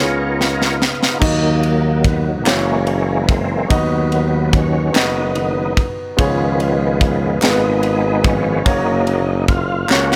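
Set in a small room with light reverb, this soulful, uplifting slow gospel passage in 6/8 at 48 BPM in F# major, cut from a longer piece, is led by a gritty, overdriven tonewheel organ soloing up front through a fast rotary speaker with chorus vibrato, over warm grand piano accompaniment, a mellow tuba bass with light vibrato, and a polished fusion drum kit with a high-tuned snare and punchy kick that enters at 0.4 s and fills again at 9.9 s, while distant group handclaps join in the background from 2.5 s.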